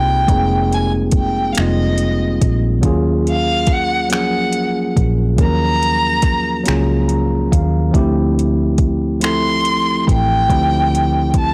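A bowed violin with vibrato and portamento sings a yearning, late-night melody over a clean tine electric piano and a dark, round, foam-muted electric bass with transformer saturation, and the drums join at 0.3 seconds with soft kick, metallic hi-hats and finger snaps. This slow six-eight R&B fragment drifts through minor eleventh chords, with an electric piano fill between 6.7 and 7.9 seconds. The dry, blown-out recording has an overdriven edge, with overdrive on the up-front electronic drums and soft clipping on their snare, and a slapback echo trailing the distant-sounding violin.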